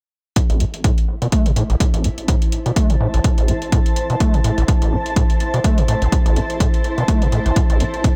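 An overdriven, squelchy acid bass riff with distortion, chorus, delay, sidechain pumping and a filter sweep leads this raw, gritty acid house excerpt in A minor at 125 BPM with swung 16ths, driven by a punchy, up-front overdriven kick and metallic hi-hats recorded in a large room, while a blurred, detuned granular cloud pad with its own reverb and pumping enters at 1.8 seconds in a lightly reverberant, echo-heavy mix.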